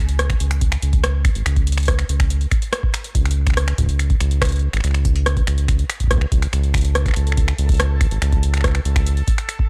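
A dry, gritty hardware sound in a digital ambience opens this short, melancholic and glitchy IDM fragment at 142 BPM, cut from a longer piece. A round, dark analog bass sits up front on sustained sawtooth-and-sine tones between G#1 and C#2, while a booming, tape-warm drum machine brings finger snaps, metallic hi-hats and rim clicks alongside a deep electronic kick. From 6.7 seconds a bright, bubbling stepped-filter texture with chorus and its own reverb enters softly in the background, its resonant sawtooth tone stepping randomly between A4 and A5.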